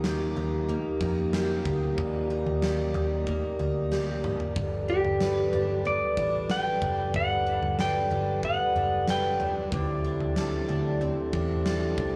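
A clean, up-front lap steel guitar carries the slide melody from 4.9 to 9.5 seconds with volume swells and analog delay in this ethereal, blissful dream pop excerpt at 93 BPM in G major, floating over sustained chords from a mellow French horn section with light vibrato, shimmering octave-doubled twelve-string acoustic guitar arpeggios touched by subtle chorus and analog delay, a dark, round, foam-muted vintage electric bass, and a huge arena drum kit with a fat snare, punchy kick and toms that plays a fill at 3.9 seconds, with little reverb on the overall sound.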